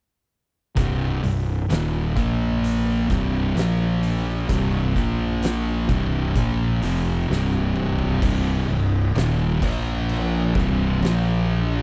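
Heard close and dry with little reverb, this fragment of ominous, brooding stoner and doom metal moves at a slow 64 BPM in 4/4, in C minor and tuned slightly low with A4 at 436 Hz. Two dark, fuzz-distorted, picked guitars play the riff from 0.8 seconds, one up front and the other sitting in the background, moving between C minor and Bb5 and C5 power chords. A round, punchy fingered bass, overdriven and amped, sits up front in the lowest register beneath them. An oversized, low-tuned acoustic kit of kick, fat snare, toms, hi-hat and crash carries the groove with gritty saturation and a bright, pumping stone-room character. The drums play a fill from 7.3 seconds before a second section begins at 8.2 seconds, returning to C minor and the same power-chord shifts.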